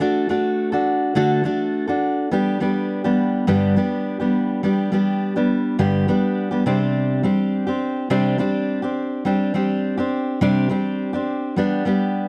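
The sound is dry and close, a 1970s-style studio recording with little reverb, putting a full-bodied jumbo steel-string acoustic guitar up front. This short pop excerpt, cut from a longer piece, carries a heartfelt, easy-going mood at 104 BPM in a straight 4/4 feel. The fingerpicked guitar plays solo in G major for the full 12.3 seconds, ranging from G2 to A4, tuned slightly under standard pitch with A4 at 438 Hz. The harmony opens on D, settles on G at 2.3 seconds, moves to Csus2 at 6.7 seconds, and returns to G near the close.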